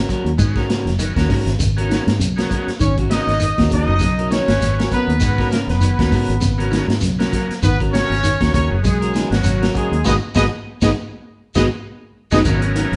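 This excerpt sounds like a band playing live together in a stone room, with moderate reverb and the highest frequencies trimmed away. It is a driving, defiant afrobeat groove at 99 BPM in 4/4 with a swung sixteenth feel, resting on a single G#m11 chord in G# minor. A crunchy, gritty breakbeat kit with a dark, saturated sound, tight kick, medium-tuned snare and hi-hat powers the groove beside a grainy shekere and a round, foam-muted fingered bass. One slightly broken-up guitar plays twangy, phaser-tinged arpeggios in the background, while a lo-fi guitar through a small old amp adds picked stabs, and a buzzy overdriven combo organ with heavy vibrato fills in the accompaniment. At 2.8 seconds a mellow, punchy horn section takes the melody in octaves, with a very quiet trombone carrying a smooth second line beneath it, and the band hits an accent from 10.0 to 12.5 seconds.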